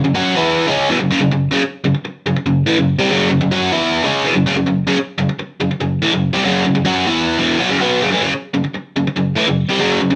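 A lone electric guitar carries this menacing, gritty rock fragment, its bright, biting overdrive set up front and double-tracked for extra heft. Picked throughout, it covers a range from E2 up to F#4 in a straight 4/4 feel, opening on an F#5 chord. The part runs the full 10.2 seconds as an unaccompanied solo, with a new section arriving at 8.2 seconds. A moderate studio reverb lends a sense of room around the raw tone, and the guitar is tuned to A4 = 439 Hz. The clip is cut from a longer piece, so it breaks off mid-flow.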